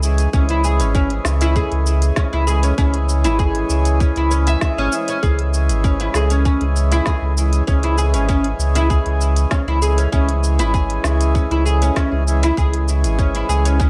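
Meditative and mystical, this organic downtempo excerpt settles into a straight 4/4 groove on a single C# minor chord. A reedy, nasal hand-pumped harmonium breathes underneath as accompaniment, its sound pumping with sidechain compression and trailed by digital delay, while a deep, round sine sub bass sits up front with a fast attack and sustained, mellow tone, pumping in the same way. From 0.3 seconds a bright, woody oud with plucked double strings spins arpeggios through a digital delay. A tight electronic kick drum, tape-warm and up front, enters at the same moment, landing over a quieter organic electronic kit of woody snare, crisp hats and shaker that has been playing from the start and sounds re-recorded in a small room. The mix is dry, with little reverb, keeping every part close and intimate.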